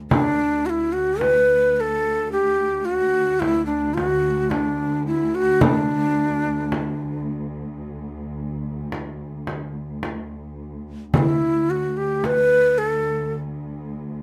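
A muted cello section opens this passionate Arabic maqam passage in 10/8 with a dark, veiled bowed drone, and a breathy ney joins almost at once up front, carrying the melody with vibrato. A small, bright frame drum sits forward alongside the reed until 12.5 seconds, while a crisp metal-shelled darbuka played with soft hands enters close and dry in the background at 11.1 seconds. Light reverb lends the mix a gentle sense of space in this passage cut from a longer piece.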